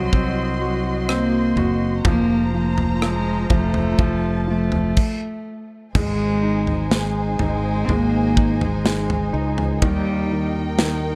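Pop ballad at a slow 62 BPM in 4/4, emotional and longing, cut from a longer piece, with a floating, distant bowed cello singing the melody over a clear, smooth grand piano and a lush, intimate string section holding sustained chords. A growly fretless electric bass sits up front beside a polished acoustic drum kit with a tight kick, crash cymbal, rim click, snare and toms, and the band pauses for a stop from 5.0 to 6.0 seconds before the second half opens on Ab. The production is dark and warm, with little reverb.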